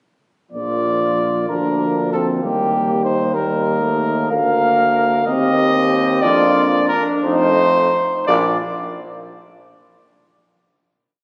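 Captured on a phone in a wet concert hall with club reverb and compression, this short, warm and noble classical brass quintet piece in Bb major moves in a rubato 6/8 at about 57-65 BPM, with an up-front cornet carrying the melody, a mellow flugelhorn with light vibrato and a smooth top doubling the tune in sixths and unison, a French horn and a mellow trombone in the background giving sustained chords and chords in the rhythm of the tune, and a bright bass trombone holding sustained bass with passing notes, all five playing from 0.5 to 8.6 seconds before a final chord rings to 10.3 seconds.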